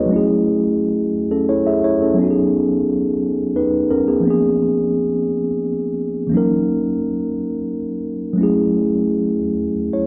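A mellow, up-front tine electric piano plays alone for the whole 10-second clip, its clean, direct tone ranging from E3 to E5 in a tender, warm R&B mood. Set in 6/8 with a straight feel, it moves through rich chords from F#m9 through B6, A#7 and D#m7 before returning to F#m9 at 8.4 seconds. A moderate concert-hall reverb adds a gentle sense of space around the instrument, and the clip reads as a fragment cut from a longer piece.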